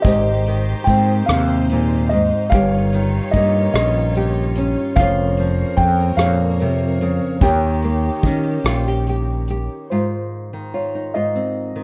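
Heard through a worn, warbling cassette tape with drifting pitch and light reverb, this tender, heartfelt acoustic folk-pop ballad in Ab major sways in a slow 6/8 at 49 BPM, with a boxy, dark grand piano carrying the melody over fingerpicked nylon-string guitar (finger squeaks up front), a hushed sul tasto chamber string section with light vibrato, a round, punchy fretless electric bass and a brushed drum kit of hi-hat, kick and rim click, until the bass and drums drop out at 9.7 s and the strings at 9.9 s, leaving piano and guitar to settle onto an Ab6 chord until 11.8 s.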